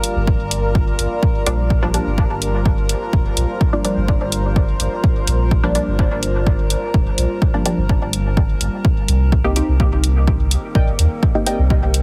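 A deep, moody ambient pad holds sustained chords alongside a metallic, inharmonic drone and a tape-warm electronic hi-hat from the start of this nocturnal, cavernous dub techno excerpt in G minor at 126 BPM, with a clean sine sub bass and a punchy, up-front kick arriving within the first second and the tonal parts breathing to sidechain pumping. From 1.5 s a muted, detuned chord stab with a filter pluck trails dub echo and phaser over Gm7 moving to Cm7, and near the end, at 10.8 s, a warbling, nostalgic lo-fi keys riff briefly surfaces. The mix is dry in the room but heavily compressed, with a dense, radio-like sound.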